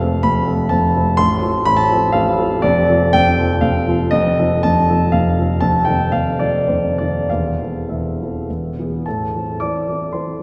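A dark, mellow grand piano sits up front in this stormy, passionate romantic character piece for solo piano, moving in a flexible rubato triple metre across a span from deep bass to high treble, shifting into a new section at 9.1 seconds before this brief fragment of a longer work breaks off at 10.4 seconds, all set in the long, wet reverb of a concert hall.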